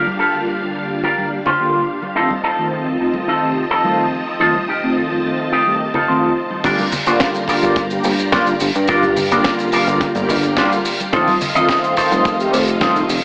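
Cosmic and groovy, this nu-disco excerpt at 107 BPM in G minor opens with mellow, brassy synth brass pumping under phaser and delay, a lush string machine holding Gm7 and F7 chords, a twangy envelope-filtered electric guitar riff up front, distant bright congas and a filter sweep on an analog polysynth, then after a clean guitar fill the drop at 6.6 seconds brings in a glossy chorused synth bass, a dry, airy kick and a tight funk kit with a high-tuned snare, all bathed in plate reverb and echo with an AM-radio tint.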